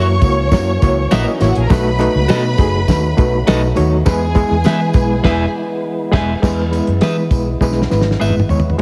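Danceable and uplifting, this short cut of uptempo 1960s-style soul moves at 102 BPM in E major, with a gritty, overdriven reed electric piano up front through fast tremolo, a punchy foam-muted fingered bass, and a dry, dark soul drum kit with a tight kick driving it from 0.2 seconds. A focused, bowed studio string section carries a second line until 6.3 seconds, while clean picked guitar stabs, a fat tonewheel organ holding chords in the background through a fast rotary speaker with key click, and a distant, jingly tambourine fill out the arrangement. The chords move from F#7 through B7 to E, the band hits an accent from 5.2 seconds, a drum fill closes from 7.6 seconds, and the whole mix carries a heavily compressed radio sound with cassette tape character and light reverb.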